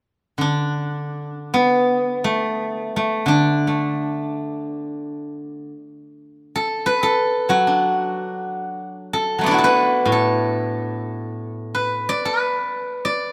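A silvery, ringing steel-string zither, played with fingerpicks and set up front, enters alone at 0.4 s in this elegant, pastoral excerpt of Chinese traditional solo plucked-string music, moving in a free rubato 2/4 through two sections, with a moderate plate reverb lending a lingering glow to a rough home-demo mix.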